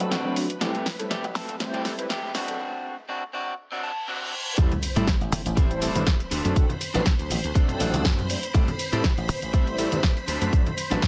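Filtered disco house with a sensual, groovy swing, this brief cut from a longer piece opens as a build-up, with a drum fill and a filter sweep over the first 4.6 seconds. A dry, foam-muted thumbed slap bass punches under mellow synth brass, round and detuned with chorus and phaser, while a lush vintage string machine holds sustained chords in the background, all three pumping against the sidechain through low-pass filters. An electric guitar at the edge of break-up picks a slightly broken-up riff, and a clean guitar fill and a reverse cymbal lead into the drop at 4.6 seconds. There the punchy, up-front electronic kick arrives alongside ringing tambourine and hard-handed congas, joining a house kit of punchy snare, shaker and bright hats, while very quiet risers and a sub drop mark the impact. The chords move between D7 and Am7, and the whole mix sits in light digital ambience with a faint edge of lossy compression.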